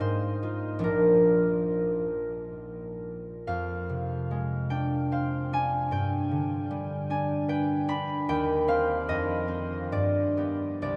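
Moving in a flexible three-beat metre with a freely breathing rubato, this classical solo harp piece unfolds in a serene, dreamy mood. The concert harp is the only part, heard up front and fingerpicked from 0.0 to 11.0 seconds, its ringing, acoustic tone spanning from Bb1 up to B5. The harmony drifts through Fm7/Ab, Bb, Dm7b5/F and G before settling through Cm/Eb and F5 and returning to G near the close. A huge, wet ambient reverb with a 7.8-second decay places the instrument in a vast, echoing space. The instrument is tuned slightly high, to A4 = 441 Hz, and this short passage is cut from a longer piece.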